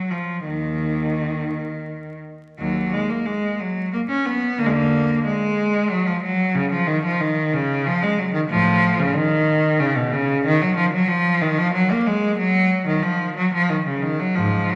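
A vinyl crackle sits beneath a wet recital-hall reverb with a 1.8-second decay, framing a short cut from a longer classical piece: a baroque-style suite movement for unaccompanied cello in Eb minor. A single bowed cello, clear, focused and placed up front with vibrato, plays alone from 0.0 to 14.8 seconds across a range from Eb2 to Db4. It moves in a rubato 6/8 around 61 dotted-quarter beats per minute, with an introspective, solemn mood and a new section beginning at 2.6 seconds.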